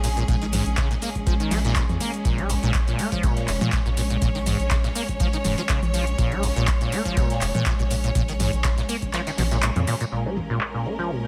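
Gritty and hypnotic, this excerpt of acid house at 122 BPM in Bb minor rides a squelchy, resonant sawtooth acid bass riff with tape echo and ensemble chorus, a round, dark analog bass and bright bowed string chords, both pumping under sidechain, over a booming analog drum machine with metallic, low-pass filtered hats, claps, shaker and toms, a muffled, lo-fi vintage kit buried very quietly beneath, and a deep, tape-warm electronic kick that enters at 0.3 seconds and drops out at 9.1 seconds before a band accent at 9.6 seconds.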